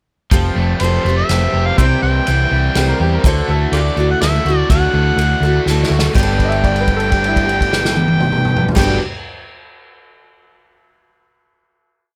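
Open-road and hopeful, this short folk rock and heartland rock piece moves at 124 BPM in a straight 3/4 in G major, passing through a pre-chorus on Fadd9, C and Dadd9 before a drum fill lands on a held Gmaj9 final chord at 6.2 seconds. A boxy parlour steel-string acoustic guitar strums picked eighths in open chord shapes, with a little finger squeak. A double-tracked, overdriven electric guitar plays bright picked arpeggios, and a very quiet tonewheel organ, gritty through a slow rotary speaker, holds shouting chords with swells and changing inversions. Underneath, a round, up-front hollow-body short-scale bass drives eighth notes, and a distant, roomy acoustic drum kit played with bundle sticks keeps a 3/4 groove with dark cymbals, a medium-tuned snare and a tight kick. From 0.8 seconds an amplified, overdriven harmonica carries a punchy pop-style solo melody that roams freely, with light vibrato and tongue slaps, and a long note is held over the final chord. 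A clear, woody, slightly detuned upright piano enters at 2.8 seconds with answering blues licks and long sustain, all in a dry sound.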